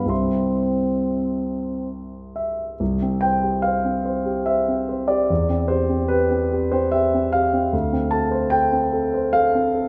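A French horn and a concert grand piano begin together in this lyrical romantic classical duo, a short cut from a longer piece in a flexible, rubato triple metre. The horn carries the melody on C4 with a soft attack and light vibrato, close-miked and up front, and it falls silent at 1.9 seconds. The piano accompanies throughout, spanning deep bass up to its upper register with a natural, warm tone that sits slightly louder in the mix. Once the horn drops out, the piano continues by itself into a second section, moving from C harmony through C over E to a bare D5 before the cut at 9.9 seconds. A moderate scoring-stage reverb lends the warm, unhurried performance a gentle sense of space.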